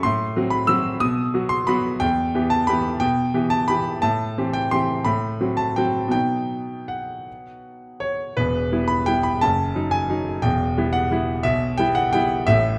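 A classical piano waltz in E minor, this short excerpt has an elegant, sparkling mood and moves in 3/4 at roughly 154-186 BPM with a flexible, rubato feel. A solo concert grand piano carries the whole piece, spanning a range from E1 up to E6. Its tone is clear and smooth with a deep bass and a vintage character, and its notes have a short sustain that keeps the phrasing crisp. The instrument sits up front, surrounded by a moderate recital hall reverb that adds a sense of space. The harmony moves through minor and diminished colours, opening on F#m7b5/A and passing through B, Em and Am7 before a new section begins at 8.4 seconds. This later passage turns between Em and D#dim/F#, and the recording ends at 12.8 seconds as a fragment cut from a longer piece.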